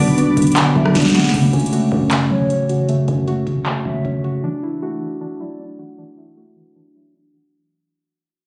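Menacing and hard-hitting, this half-time trap fragment at 155 BPM in F# minor opens with muted, felt-like synth keys as accompaniment and a second keys part playing delayed arpeggios, over a deep, moody pad that drops out at 1.3 seconds. An overdriven analog drum machine sits up front with a booming kick, crisp snare, metallic hats, claps and rim clicks, while a growling, buzzy 808-style bass stays in the background; a drum fill leads into the second section, and the bass and drums are gone by 4.4 seconds as the chords shift from F#m to Dadd9. A hollow, woody clarinet-like lead with vibrato carries a second line from 0.8 seconds, and the whole piece, coloured by vinyl crackle and a phone-in-the-room sound, fades out under a filter sweep.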